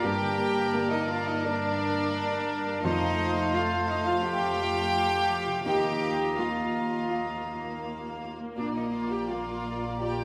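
A moving, tender cinematic passage at 84 BPM in a rubato 4/4, its chords drifting from Gmadd9 through F and Ebsus2 to Bb over about 10.2 seconds of a longer piece. A floating, sul tasto violin section carries the melody while a second violin line, a hollow silver flute and a solo oboe add second lines. A very quiet French horn section holds sustained chords, with dark, woody violas, a felt-muted upright piano and ringing fingerpicked harp arpeggios in the background. The cellos sit prominently with the rich double basses in the bass, and the whole ensemble is bathed in a wet scoring-stage reverb.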